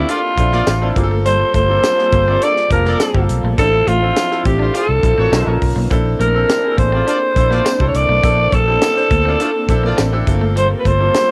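A gritty, breathy alto saxophone leads up front from the opening over a distant horn section, a bright baby grand piano with audible action noise and a twangy, slightly broken-up electric guitar riff tucked in the background, all four carrying a cassette-tape softness, while a dark, round, foam-muted bass anchors this breezy, urban slice of polished 1980s jazz-funk pop. A tight funk drum kit with a high-tuned snare and a very quiet, silky string machine with phaser join almost at once, and a jingly tambourine enters at 0.7 s. The horns drop out at 10.0 s while the rest continues under light reverb, sounding like a home recording cut from a longer piece.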